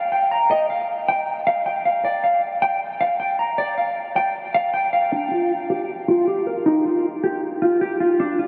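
A mellow, clean electric guitar plays alone and up front from 0.0 to 8.5 seconds, its fingered, compressed tone colored by analog chorus, a low-pass filter and tape echo as it moves between D4 and Bb5. This brooding, dark hip hop fragment in G minor runs at 156 BPM with a half-time feel, tuned to A4 = 439 Hz, and is cut from a longer piece. A huge ambient reverb soaks the dreamy mix, and a filter sweep colors the guitar as a new section begins at 5.1 seconds.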